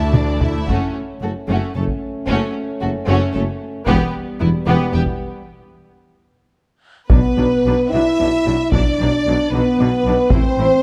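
Dramatic and heroic, this cinematic orchestral film score excerpt moves at 75 BPM in a straight 6/8, grounded in F# phrygian before shifting to B phrygian at 7.1 seconds. A taiko ensemble struck with hard sticks sounds close and dry, opening with a fill before a break at 5.5 seconds, while a very quiet, lush string section holds a chord only until 0.7 seconds. The violins carry the melody in the background with a smooth, even tone, as a second violin line sounds focused and full beneath it, and the violas add vibrato-rich accompaniment. A mellow French horn section sits up front with sustained chords and a vintage, classical character. The low end combines a very quiet cello section, a soft-attacked tuba, and a distant double bass section that slides expressively with portamento. Light reverb and close, detailed microphones keep the sound clear as the harmony moves from F# minor through E minor to B minor and finally A minor.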